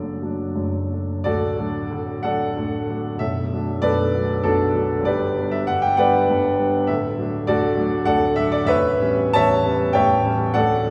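A warm, open baby grand piano plays alone in this hopeful, lyrical romantic character piece in D major and 3/4, its rubato pulse moving between 85 and 102 BPM as the harmony passes from D/F# through D, Bm7, G and D to an A9, its long sustain ringing into a wet concert hall reverb heard from further back in the room, in a short passage cut from a longer classical work.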